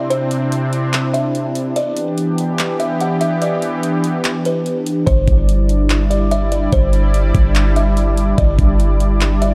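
A half-time trap kit of knocking kick, metallic hats and handclaps drives this spacious, melancholic cloud-rap hip hop fragment at 145 BPM, beneath a bright, detuned sawtooth pad pumping with sidechain and chorus over Cadd9 and Em7 and a woody, buzzing kalimba melody softened by a low-pass filter and digital delay, until a deep, boomy 808 bass enters on G5 at 5.1 seconds in a dark, dry mix.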